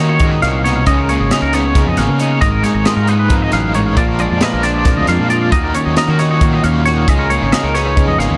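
A clean, compressed twelve-string electric guitar, a twangy guitar playing arpeggios through tremolo and digital delay, a bright, double-tracked overdriven guitar riff with tremolo, and a growly fuzz bass played with fingers open this wistful, restless math rock and midwest emo excerpt in 7/8 at 270 BPM in Eb minor; a crisp, airy fusion drum kit with a high-tuned snare and punchy kick joins at 0.2 seconds, and the band cycles through Ebm9, Db13, Abm9 and Bb7 in a dark, warm production with light reverb.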